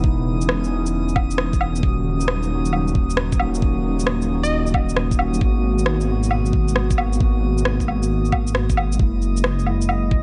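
An overdriven, knocking electronic kick leads this wistful, nocturnal, swung future garage excerpt, joined from 0.4 s by an equally overdriven shaker, rim click and woodblock, over a dark, rumbling detuned saw bass, a mellow tine electric piano with analog delay and a low-pass filter, an airy, breathy pad in the background that stops at 9.0 s, a calm, drifting glass-harmonics texture up high, and a brief crystalline wavetable pluck at 4.4 s, with the bass, electric piano and pad pumping against the sidechain.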